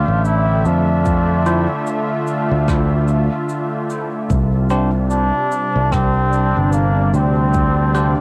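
Meditative and deep, this 74 BPM ambient dub fragment in D minor, moving from Dm to Csus2 at 4.3 seconds, sets a nasal, distant straight-muted trombone melody with vibrato, drenched in dub echo, plate reverb and cassette tape grit, over a detuned, warbling analog pad with chorus, a growly overdriven fingered electric bass sitting up front, dark, rolled-off cabasa and rim clicks with their own echo, an overdriven electronic kick entering at 1.1 seconds, and very quiet bell-like tine electric piano stabs from 1.5 seconds, the whole piece recorded at home on cassette in a small booth.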